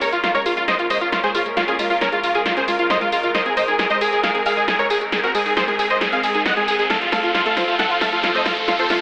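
A dense, compressed supersaw lead sits up front in this driving, emotional uplifting trance build-up, cut from a longer piece. Its thick, detuned sawtooth body and sub octave carry the melody through cassette-tape grit and digital delay. Beneath it, a very quiet, airy supersaw stab adds a second line, while a distant chamber string section with gut-string tone and light vibrato holds sustained bowed chords in the background. A lush unison pluck spins arpeggios through phaser and tape echo, with a filter sweep running across the passage. The layered big-room drum kit, with its huge snare, metallic hats and tambourine, plays a fill for the full 9 seconds alongside a faint electronic riser, as the harmony moves from Bbm7 to Abadd9 and on to F. The whole mix is bathed in a vast ambient reverb and thinned by a high-pass filter into a telephone-like sound.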